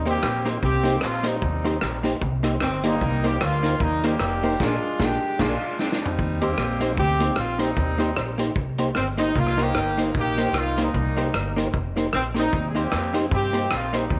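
Bouncy and cheerful, this ska clip in Eb major swings along at 152 BPM, led by a punchy, up-front horn section with light vibrato over woody pizzicato upright bass, a dark, clean hollow-body jazz guitar and a lightly overdriven tonewheel organ with key click, slow rotary speaker and slapback echo tucked in the background, while a vintage drum kit with a punchy kick and dark cymbals drives a band accent from 4.6 to 6.2 seconds capped by a drum fill, and very quiet, distant handclaps sound at the start and return at 12.9 seconds, the whole band set in a moderate echo-chamber reverb.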